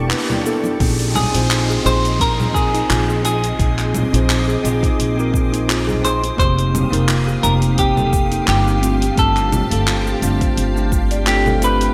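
Sunset chillout at 86 BPM with a light sixteenth-note swing, wistful and smooth, in a bright 1980s-style digital production with moderate lush hall reverb. A deep, tape-warm electronic kick and an overdriven deep house kit of cabasa, handclaps, hi-hat and congas sit under a thumpy, woody pizzicato upright bass. Meanwhile, a bell-like tine electric piano and a background kalimba, both through digital delay, weave arpeggios and accompaniment over a silky, warbling string machine and a very quiet drifting glass-harmonics texture, with a swell and downlifter opening the first 6.4 seconds. From 1.2 seconds a clean, hollow-body semi-hollow electric guitar carries the melody with vintage 12-bit sampler grit and delay, over sus-nine chords moving from A through Bb, F and G.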